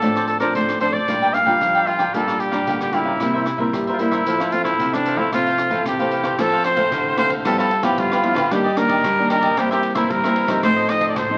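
Playful and joyful, this short samba-choro excerpt moves at 113 BPM in F major, with a bright, up-front trumpet carrying the melody with vibrato in a jazz-style solo over crisp picked cavaquinho and fingerpicked nylon-string guitar. A second small-toned nylon-string guitar takes the bass line, while an open jazz drum kit with dark cymbals, a boomy kick and rim clicks sits low in the mix. The whole band plays in a large studio room with moderate reverb, heard through the crackle of a very old 78 rpm record, and the piece moves into a new section at 6.4 seconds.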